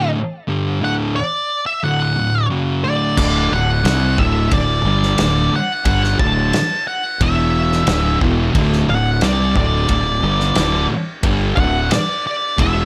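Quiet-loud alternative rock in D major at 89 BPM in a straight 4/4, this short cut from a longer piece feels anthemic and cathartic. It opens with an up-front octave-fuzz lead guitar carrying the melody high in its range, from D5 to A5, over a thick, dark fuzz guitar riff picked low between D2 and C4. At 3.2 seconds the band fills in: a second thick fuzz guitar plays a riff very quietly in the same register, a growly overdriven fingered electric bass digs in down to D1, and a loose indie drum kit joins with kick, snare, ride and crash. The kit sounds like a small room, mid-forward with dark cymbals, a medium-tuned snare, a tight kick and a rolled-off top. The harmony sits on D before shifting to E5 at 7.2 seconds and back to D5 at 7.9 seconds, all under a light reverb.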